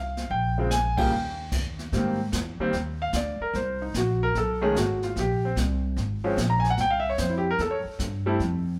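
A relaxed, sophisticated swing at 148 BPM carries this short jazz piano trio excerpt, where a clear, up-front grand piano states the melody and takes a solo from 1.9 seconds over chords moving from Bbm7 through Abmaj9 and Ebm6 to C, a woody, growly pizzicato upright bass anchors the low end, and a brushed drum kit with dark cymbals and a punchy kick joins at 0.2 seconds, the band hitting an accent together at 0.9 seconds in a live room with moderate reverb and a faint mains hum.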